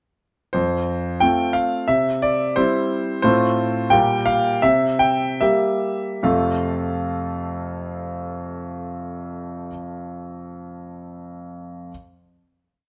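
A clear concert grand piano opens this complete, graceful and cheerful classical-period sonatina in F major, playing a single-line melody over bass and chords on the beats in a rubato 2/4 at 69-90 BPM; the short theme moves through F, C, F/A, Gm/Bb and C7, slowing from 2.6 seconds until a final F chord arrives at 6.2 seconds and rings with long sustain to 9.7 seconds, the piano sounding intimate and up front with audible action noise and deep bass in light reverb.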